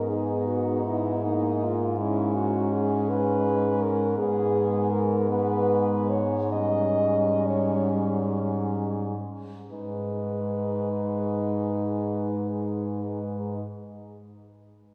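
A horn quartet sounds together from the start of this melancholic, solemn classical excerpt in G# minor, a lyrical 6/8 piece played with rubato at 32-55 BPM in dotted quarters, with a clear French horn carrying the melody above a present second horn line, a mellow, soft-attacked accompaniment horn with light vibrato sitting distant in the room, and a warm bass horn sharing that vibrato on a low G#2 up front, all heard from further back in a wet church reverb as the pace slows between 3.1 and 9.7 seconds before the G# minor chord arrives again at 9.7 seconds.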